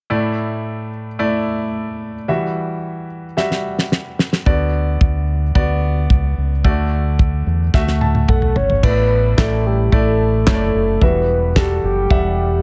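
Warm and anthemic, this short piano-driven pop cut opens on a clear, up-front grand piano with a short sustain, then brings in a damped 70s drum kit with a fat snare, tight kick, dark cymbals and handclaps at 3.4 seconds, a round fingered electric bass at 4.5 seconds, and, during a drum and piano fill, a soft octave-layered synth lead with chorus and vibrato that carries the melody from 8.3 seconds over chords moving through Asus4, Emadd9, Bm/D and D in a small room.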